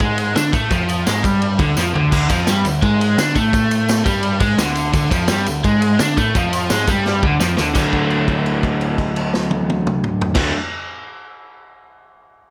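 This garage rock cut, taken from a longer piece, has a swaggering, raw attitude and a straight feel. A crunchy, overdriven electric guitar, picked and double-tracked, sits up front with a riff built on a power chord. Beneath it, a growling picked electric bass with tube-saturated overdrive adds a thick, heated low end. A vintage acoustic kit with dark cymbals, a medium-tuned snare and a punchy kick plays from a studio room, its top end rolled off, with drum fills at 1.8 seconds and again at 7.0 seconds. A jingly tambourine rattles in the background until 7.9 seconds, and at 7.8 seconds the band settles onto a held D under a light reverb.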